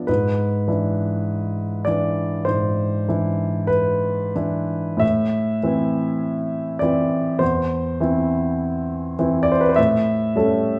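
This short excerpt, cut from a longer piece, sounds as if heard from further back in a large studio, its wet reverb of 0.8 seconds lending a soft glow while the top end stays rounded off. It is a romantic classical nocturne for solo upright piano in A minor, moving slowly at 50 BPM in 4/4 with a free, rubato feel and a yearning, wistful mood. The piano itself is woody and intimate, polished yet present and up front, with long sustain and the audible noise of its action adding a close, tactile quality. Its range spans E2 to E5 across the whole 10.8 seconds. The harmony opens on E7/G#, settles onto A minor at 5.0 seconds, and turns toward A7 at 9.8 seconds just as the fragment ends.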